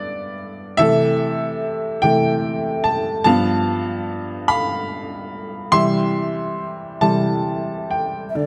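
A bright, woody upright piano opens this short cut from a longer Celtic slow air, playing alone in a rubato 6/8 at roughly 45-49 BPM and moving through G, C6, G7 and C with a nostalgic, pastoral calm. At 8.3 seconds a hollow, airy bansuri slips in with a soft attack and gentle vibrato for a brief melodic touch, and both parts close together at 8.5 seconds. Close, detailed microphones keep the piano up front, with a light reverb around the sound.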